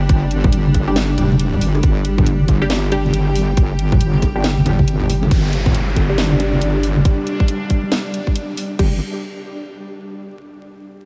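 A swung half-time groove in 4/4 opens this brooding, cavernous slice of deep dubstep, as a tight, tape-warm electronic kick sits up front with a garage drum kit's cracking snare, hi-hat and crash, while bright congas and bongos strike with hard hands in the background until 7.0 seconds. A heavy, saturated wobble bass dominates beneath a cloudy granular pad, and a muted filtered dub chord stab flickers behind them through phaser and dub echo. From 5.3 seconds a downlifter descends, joined at 6.2 seconds by a dreamy reversed texture, all over a layer of vinyl crackle and light digital ambience.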